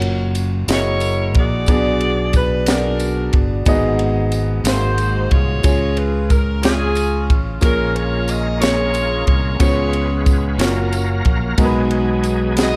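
In a straight 6/8 feel, this uplifting, hopeful slow gospel piece pairs a woody upright piano, a growly fingered electric bass and a crisp, airy drum kit of tight kick, high-tuned snare and ride with a jingly tambourine in the background, while a saxophone section carries the melody with soft-attack vibrato and a bright tonewheel organ enters at 7.6 seconds with lightly overdriven, key-clicking chords through a slow rotary speaker, all under light reverb.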